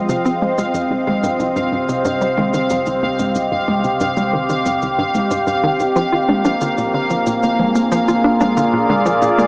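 A vast, wet reverb with an 8.4-second tail fills this short excerpt, yet the sound is small, as if played through a tiny speaker, framing a mysterious, cosmic piece of sequencer-driven space music at 92 BPM in 4/4. Up front, an evolving wavetable pad morphs and warbles through sustained, detuned chords with phaser, while a vintage sawtooth-and-pulse drone with chorus hums in the background beneath a bright, tempo-synced gated texture pulsing on a high F5. A hollow, bouncy square-wave pluck with analog delay carries the riff, and electronic cabasa and toms, tape-warm and re-recorded in a large room, tick along as the chords move from Fm7 to Cm and reach Bb7 at 6.0 seconds.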